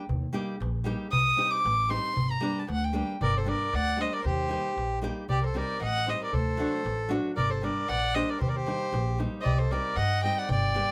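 A band playing live in one room fills a small space with a moderate ambience in this bittersweet, virtuosic fragment of Balkan wedding music cut from a longer piece, moving in a lilting, swung 2/4. A bright, fingerpicked nylon-string guitar with audible finger squeak and a woody, growly pizzicato upright bass set the foundation from the start, while a clay-shell darbuka with a natural skin sits in the background. The violin, up front with a nasal, gut-string, period-style tone and an airy bow, enters at 1.1 seconds for a soloing melody in a high register. At 3.2 seconds the music moves into a new section as a reedy single-reed accordion with dry tuning joins as a clear second line alongside the violin. The harmony circles through Eb, Cm and Gm, with a D chord adding tension midway before the progression returns to Gm and carries on.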